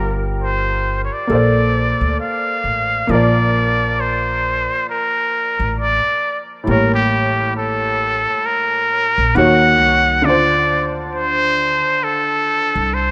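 Lo-fi hip hop with a mellow, cosy mood and a swung 16th-note feel, heard as a short 13.1-second cut from a longer piece. A close-miked trumpet with a straight mute carries the melody up front, its nasal, breathy tone softened by a low-pass filter and shaded with vibrato, while a clear, slightly detuned upright piano with a worn, cassette-tape colour plays the accompaniment beneath. A woody, thumpy pizzicato upright bass on gut strings anchors the low end, and the whole rough home-demo mix sits in light reverb and small-room ambience as the harmony moves through rich seventh and ninth chords.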